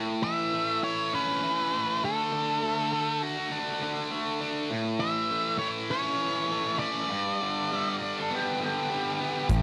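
A straight 4/4 pulse at 101 BPM drives this swaggering classic rock passage in A mixolydian: a tight, bright, double-tracked distorted guitar riff moves through A, D and G while a dark octave-fuzz lead guitar carries the melody with slapback echo, a second fuzz line joins at 7.7 s, and a growling overdriven picked bass and a big acoustic drum kit with punchy kick and hi-hat arrive only at 9.5 s, captured in a dry, close 1970s-style small-room sound and cut from a longer piece.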